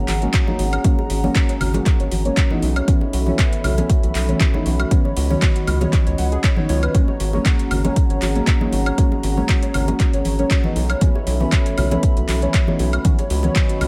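An overdriven, up-front kick drives this late-night deep house excerpt at 118 BPM with a light 16th-note swing, joined by a layered kit of handclaps, metallic hi-hats and woodblock plus very quiet congas and bongos recorded in a small room. A round, deep analog bass sits prominently under sustained chords from a dark, detuned pad and soft chord stabs that move through phaser, tape coloring and a diffuse ambient delay, all pumping against the kick. In the background, a warbly, lo-fi pluck spins G# minor arpeggios through analog delay over a sus-chord progression that cycles from G#9sus4 through B9sus4 to C#9sus4.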